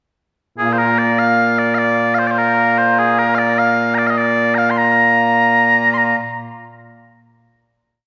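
Mellow, sweet small bagpipes play a continuous, ornamented modal melody with vibrato, alone and up front, in this proud, stirring piece of Scottish traditional pipe music in Bb mixolydian and 6/8 at 100 BPM, entering at 0.6 seconds during a brief pickup bar and ringing through a concert hall reverb until 6.2 seconds, as the final note carries into the room until around 7.2 seconds.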